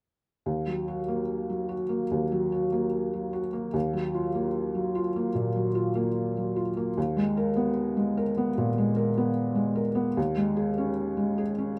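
A felt-muted upright piano plays alone from 0.5 to 11.8 seconds, its soft, mellow tone sitting up front with an intimate, vintage character and light reverb. This short neoclassical minimalist fragment, cut from a longer piece, moves in a loose rubato over a pedal on Eb, drifting from Gb/Eb through Ebmadd9 and Abmadd9/Eb to Dbsus2/Eb. The mood is reflective and wistful, with the piano staying between Eb2 and Bb4.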